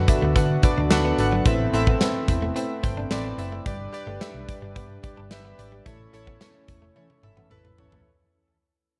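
This short 1980s-style pop excerpt moves at 109 BPM in a straight 4/4, glossy and romantic, with a dark production and light studio reverb, passing through D6, Amadd9, G and A while fading throughout. Up-front analog keys with chorus and a filter sweep carry the accompaniment over a big-room rock kit with a punchy kick, medium-tuned snare, hi-hat, tambourine and toms. A round, amped hollow-body bass sits underneath, a bold, detuned brassy pad with vibrato holds chords in the background, and a very quiet clean, direct-recorded guitar plays a riff. The band hits an accent from 5.9 seconds, and a drum fill and faint detuned synth-brass stabs with ring modulation arrive at 7.0 seconds.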